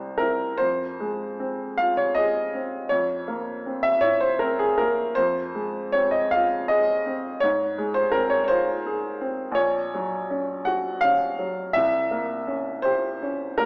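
A slow, rubato lilt in 12/8 carries this romantic classical nocturne, moving at roughly 49-57 beats per minute counted in dotted quarters. A lone baby grand piano, clear and natural with a short sustain, sits up front and ranges from Bb1 up to Gb5 in F minor, tuned to A4 = 442 Hz. The mood is wistful and yearning as the harmony moves from C to Fm, through a tense C7b9 over F, back to Fm, then Fm/Ab and Gb/Bb before settling on C7b9 at 11.7 seconds. A wet recital hall reverb surrounds the instrument, while a worn cassette tape quality adds a warbly pitch drift and a small-speaker sound. The 13.7-second passage is cut from a longer piece, ending on that unresolved dominant chord.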